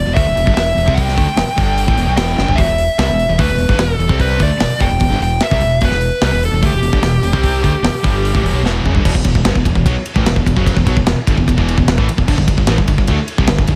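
A straight 4/4 pulse at 149 BPM drives this menacing hard rock cut in E minor, taken from a longer piece, with a tight metal drum kit up front whose medium-tuned snare, tight kick and rolled-off top sit in a studio room, marked by drum fills at 2.4 seconds and again leading into the second section at 9.0 seconds. A growling fingered electric bass with overdrive holds the low end, direct and amped. Three picked electric guitars share the riff: a bright, cranked stack guitar with overdrive and spring reverb, a double-tracked high-gain guitar with distortion, both set in the background, and a very quiet, sludgy guitar with a dark overdriven tone. Over them, a dark, smooth overdriven lead guitar carries the melody up front between G4 and G5 until it stops at 8.6 seconds, leaving the riffs, bass and drums to push through the closing section. The harmony sits on E minor before shifting to a G5 power chord at 12.3 seconds, all held in a studio reverb.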